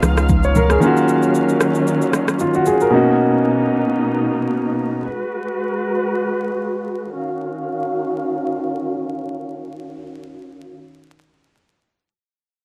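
Dry, gritty and dusted with vinyl crackle under light reverb, this hypnotic, deep amapiano fragment in Eb minor at 114 BPM opens with an intimate concert grand piano showing audible action noise, a round, wave-folded analog bass, an electronic drum kit with a deep kick, rim click and shaker, and ringing, soft-handed congas in the background, before the piano drops out at 5.1 seconds and leaves the lush, bowed string section, dark and expressive with vibrato and portamento, playing alone through a filter sweep that ends at 7.1 seconds.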